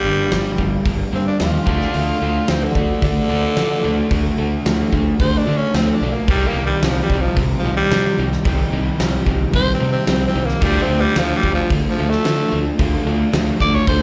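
Classic rock with a swaggering, driving feel at 111 BPM in a straight 4/4, this fragment of a longer piece, heard as a live gig through the venue's PA with club reverb, centers on a breathy, raspy tenor saxophone solo up front with light vibrato and slapback echo over a Gm, D, Cm, Dm progression. Beneath it, a fuzzy, round fingered electric bass punches out the low end, while a tight distorted guitar with slapback echo and an overdriven hollow-body semi-hollow guitar play riffs in the background. A very quiet picked steel-string acoustic guitar with audible finger squeak adds accompaniment, and a huge arena drum kit with a fat snare and punchy kick enters at 0.3 seconds.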